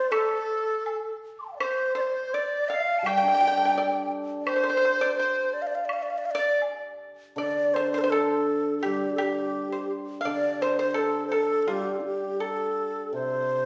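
Rubato in 2/4 at about 83 BPM, this wistful, tender fragment of Chinese traditional chamber music in D yu mode sets an up-front, breathy xiao melody with vibrato and tongued notes above a dry, percussive, fingerpicked pipa, while a bright, reedy, buzzing large dizi stops at 6.6 s, a close woodblock stops at 6.8 s, and a shimmering, ringing hammered dulcimer enters at 3.0 s, in a wet recital-hall reverb.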